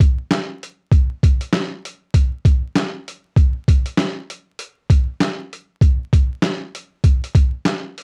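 A swung 16th-note groove at 98 BPM in 4/4 drives this reflective, gritty hip hop fragment of 8 seconds, cut from a longer piece. A boom bap sampler-style drum kit plays alone and sits up front, its thumpy kick, medium-tuned snare, hi-hat and handclaps sounding compressed, pitched down and coloured by cassette tape. Light reverb and vinyl crackle give the whole clip the feel of a home recording on cassette.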